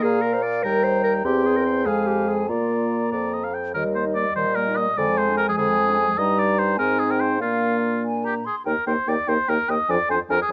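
The oboe stands loudest in this graceful, cheerful classical-period movement for wind quintet, carrying a second line with a soft attack, light vibrato and a smooth top that sits up front in the blend. Above it the concert flute sings the melody in a pure, hollow tone with vibrato and tongued notes, closely miked yet set a little lower in level. The clarinet adds clear accompaniment across a broad range, while the mellow French horn fills the middle from a distant, roomy position. The bassoon anchors the bass with light vibrato and a gentle attack, heard up front despite its roomy placement. Moving at a quick 98 BPM in a straight 6/8 in Eb major, the short passage is cut from a longer piece. It turns to a new section at 3.8 seconds, with harmony passing through Fm, Ab and diminished colours before closing on a diminished chord over F, all under light reverb and close, detailed microphones.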